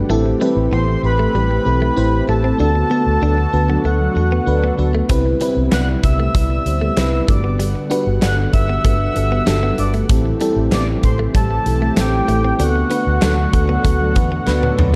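Up front sits a round, foam-muted electric bass, dark and amped, anchoring this nostalgic, glossy slice of 1980s-style pop from 0.1 seconds onward, cut from a longer piece. Around it, a dreamy, warbling FM electric piano with a soft pad layer and chorus carries the accompaniment, while a smooth analog pad holds sustained chords in the background and a bright, twangy clean guitar, recorded direct, picks a compressed riff. A mellow, reedy accordion with delay enters at 0.7 seconds to carry the melody over chords moving from Am7 through D6, Cmaj7 and Gmaj7. Brassy synth stabs with chorus mark the band accents, and a huge arena drum kit with a punchy kick and medium-tuned snare arrives at 5.1 seconds, joined by a very quiet, crisp group handclap and closing on a drum fill. The production is dark and warm, set in a lush hall reverb with studio ambience.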